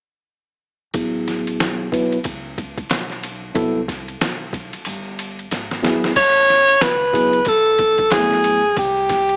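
A swung 16th-note groove at 92 BPM in 4/4 drives this smooth, relaxed jazz-hop piece in A major, where a muffled, pitched-down sampler-style drum kit with a thumpy kick and a drum fill at 5.5 seconds backs a clean tine electric piano under a filter sweep and a woody pizzicato upright bass set in the background, until a breathy, whispered alto saxophone with light vibrato enters up front at 6.2 seconds, the mix carrying light reverb and a small-speaker sound.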